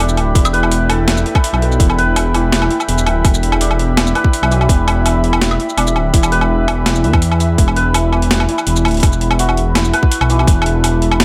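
A moody analog pad with chorus and sidechain pumping opens this dark, heavy half-time drum and bass excerpt, joined from the start by a shimmering, hammered santur playing arpeggios through digital delay and a deep, rumbling detuned saw bass up front. A gritty, overdriven sampler-style kit with a high-tuned snare, hi-hat, shaker and woodblock arrives at 0.1 seconds, re-recorded in a large room, and a hard-clipped electronic kick enters at 0.4 seconds as the loudest part. Light reverb gives the mix a modest sense of space.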